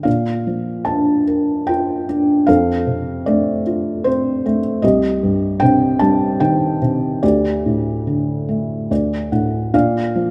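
A lyrical classical solo piece for felt-muted upright piano, reflective and wistful, moving in a rubato 3/4 at roughly 71-78 BPM through a Bb, F, Cm, Dsus4 progression that returns to Bb at 9.7 seconds. The thick felt gives the piano a soft, dark, intimate voice placed up front, with audible action noise and a light reverb around it, and a brief fill arrives at 8.5 seconds before the closing chord of this short passage from a longer work.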